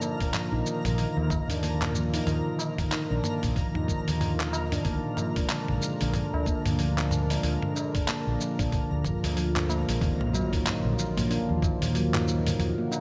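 Organic downtempo at 93 BPM with a hypnotic, earthy mood, built around ringing, close-miked handpan arpeggios with digital delay over a round, dark fretless electric bass and a warm chorused analog pad in the background, both pumping under sidechain, while a gritty, tape-warm sampler-style kit of handclaps, hi-hat, shaker and toms and a thumpy electronic kick swing over very quiet high-tuned tabla, a twinkling granular shimmer ends at 10.0 s as the kick drops out briefly at 9.4 s, and a distant electronic impact lands at 10.0 s on the move to Ebmadd9.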